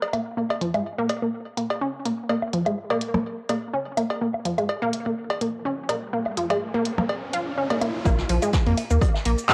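Minimal techno with a hypnotic, quirky pull, this excerpt opens on a squelchy, resonant sawtooth pluck riff under a filter sweep, set against up-front layered cowbell, woodblock and percussion blips and a click kit of handclaps, clicky hats, ride cymbal and shaker, all colored by cassette tape, with tape echo trailing the pluck and the percussion. A riser enters at 5.6 seconds, and at 8.1 seconds the drop arrives with a punchy, overdriven electronic kick, a thick triangle sub bass with tube saturation and sidechain pumping, and a faint brushed kit of snare and hi-hat in the background. A moderate spring reverb and homespun cassette character give the sound a lo-fi, intimate grain.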